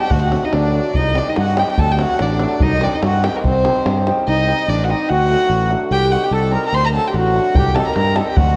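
An intimate, up-front violin carries the melody in this restless, bittersweet Balkan wedding-band fragment, its rich sul tasto tone soft in attack, airy in the bow and touched with light vibrato. A dark, reedy accordion with slow beating plays a smooth second line under a slapback echo, while a shimmering hammered dulcimer rings in the background. A growly, punchy fingered electric bass sits bright and direct near the front. The tight davul drives the swung 2/4 at 146 BPM, drops out at 4.2 seconds and returns at 7.5 seconds. The tempo speeds up throughout as the harmony swings between D and C minor in a C Dorian sharp-four colour. A moderate concert-hall reverb surrounds the ensemble, and a worn cassette-tape warble gives the whole piece a drifting, aged pitch.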